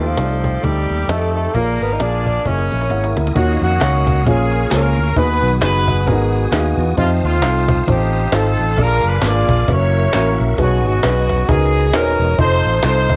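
A swung 4/4 pulse at 133 BPM drives this fervent, soulful slice of uptempo gospel, cut from a longer piece, with a snappy, close and dry cajon and a growly, amped fingered electric bass sitting up front. A tenor saxophone with light vibrato and a vintage jazz tone opens the melody alongside the horn section, then drops out at 3.2 seconds, leaving the roomy, distant-sounding but forward horns to carry the tune in a pop-style ensemble voice. Beneath them, a woody upright piano plays accompaniment, while a reedy, clean tonewheel organ holds sustained chords in the background through a fast rotary speaker and chorus vibrato, its key click audible. After a drum fill starting at 2.4 seconds, tambourine and handclaps join at 3.4 seconds, adding a band-limited group-clap sparkle as the harmony moves from Ebm9 through F7, Bb7 and Gb7 to B69. Light studio reverb and a warm cassette-tape character give the whole track the homespun feel of a home recording.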